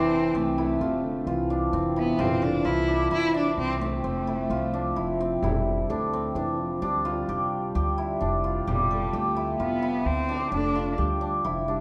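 Restless and shimmering, this contemporary chamber excerpt in an uneven 7/4 sets a rich, bowed cello melody with vibrato against a dark solo French horn line, ringing hammered cimbalom arpeggios up front, a woody, growly pizzicato upright bass, and a very quiet, small, bright frame drum entering at 0.6 seconds, all bathed in a recital hall's reverb over a shift from Fmaj7 to Gsus2/F.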